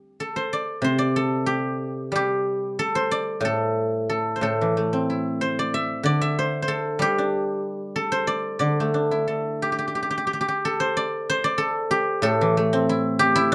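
Flowing and pastoral, this short cut from a longer Chinese traditional piece features a solo guzheng, silvery and ringing under fingerpicks and set up front in a moderate studio reverb, moving with rubato freedom around 93 BPM in 2/4 in the D shang mode, tuned to A4 = 444 Hz, spanning A2 to E5, and shifting into a new section at 10.0 seconds before it ends at 13.5 seconds.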